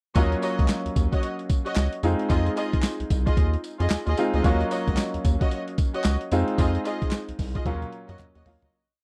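A dry, close recording in the manner of a 1970s studio, this complete new jack swing piece has a confident, bouncy R&B feel in 4/4 with a hard swing on the 16th notes. A gritty, pitched-down sampler-style drum kit sits up front, with a thumpy kick and a high-tuned snare layered with clap, plus hi-hat, tambourine and toms, and a drum fill arrives at 7.7 seconds. A round analog synth bass with a fast attack plays a mellow, swung funk line full of muted ghost notes and chromatic approach notes. A polished grand piano pushes rootless chords that move between Ebm7 and Fm7, while a reedy studio string section with a gut-string tone adds short, syncopated bowed stabs carrying tape echo. A very quiet, human-sounding group handclap marks the backbeat from 0.7 seconds, and the piece fades out from 6.6 seconds.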